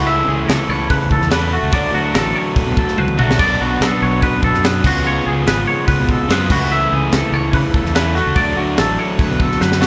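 Math rock and Midwest emo meet in this wistful, playful fragment from a longer piece, set in a straight 4/4. A twangy, clean electric guitar, fingered and compressed, spins chorus-tinged arpeggios with a slapback echo, while a crunchy, double-tracked overdriven guitar sits up front, picking a bright riff with the same short echo. Underneath, a growly fuzz bass with punchy overdrive anchors the low end, and a crisp fusion drum kit joins at 0.5 seconds with an airy, polished sound, a high-tuned snare, a punchy kick, hi-hat, crash and toms, adding fills around 3.0 and 9.6 seconds. The harmony moves through Aadd9/C#, Dmaj7, Bm7 and C#7sus4 before circling back. It sounds like a live gig heard through the venue's PA, soaked in club reverb and dulled up top, with the highs rolled off above 7.9 kHz.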